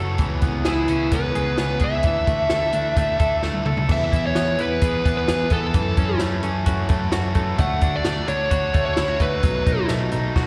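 Jangly indie pop at 130 BPM in a straight 4/4, wistful and bittersweet, heard as a live gig through the venue's PA with recital-hall reverb, cut from a longer piece and moving from C#m7 and Dsus2 into a section built on E, F#m7, D and B7 after a drum fill at 3.4 seconds. A bright, twangy clean electric guitar plays chorused, echoing arpeggios over a biting overdriven rhythm guitar, while a vintage muted bass gives a dark, round, foam-muted low end and a compact cocktail kit with dark cymbals, a high-tuned snare and a punchy kick enters at 0.2 seconds. Up front, a fuzz lead guitar carries the melody from 0.7 to 9.9 seconds, its distorted tone trailed by plate reverb, slapback and analog delay.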